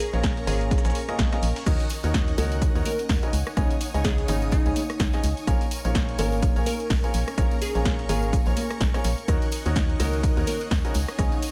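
A punchy, up-front electronic kick drives a swung groove, joined by a layered house kit with a punchy snare, rim clicks, warm hats, ride and crash in a small room, while a gritty, very quiet sampler-style kit adds hi-hat, shaker and snare beneath it. This soulful, energetic piano house excerpt is anchored by a hollow, organ-like FM bass with a dark, decaying tone, pumping against the kick alongside a clear, woody upright piano riff. From 1.7 seconds, saturated tambourine and hard-hit congas ring in the background. A glassy, crystalline wavetable pluck carries the melody through chorus, cassette tape colour and digital delay, and it stops at 10.6 seconds. A shimmering vintage string machine of violins holds pumping chords in the background, and a very quiet granular cloud pad drifts and blurs through the texture, with the overall mix kept dry and close.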